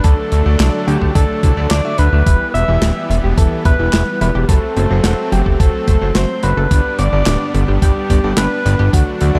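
A dark, moody synthwave mix set in light studio reverb carries a cinematic fragment cut from a longer piece. It is led by a mellow alto saxophone playing a jazz-style solo melody with vibrato, subtone and scooped notes, trailed by delay. Up front, a fat, detuned analog bass with sidechain pumping and a thumpy, sampler-style electronic kick anchor a small-room acoustic kit of handclaps, hi-hat and snare, while a smooth supersaw holds sustained chords and a clear, vintage electric grand piano adds stabs in the background. A lush, dreamy FM electric piano with a soft pad layer plays a high second line, a bright, twangy clean guitar riff sounds very quietly until 2.2 seconds, and from 2.3 seconds a round, nasal analog pluck plays arpeggios through chorus, phaser and delay.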